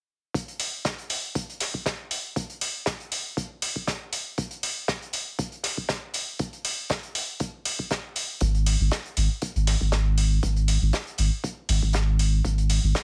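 Acid house with a gritty, driving mood, this short cut from a longer piece moves in 4/4 with a light swing on the sixteenths. A deep analog kick and metallic electronic hats, both re-recorded in a large room, sit up front from the start. Beneath them, a loose acoustic kit from a small room adds a medium-tuned snare and its own hi-hat, mid-forward and rolled off at the top, with sidechain pumping on those hats. At 8.4 seconds a round sine sub bass arrives with a fast attack and sustained notes, pumping against the beat and carrying real weight. The whole mix is dry and heavily compressed, giving it a squashed, radio-like sound that ends at 13.0 seconds.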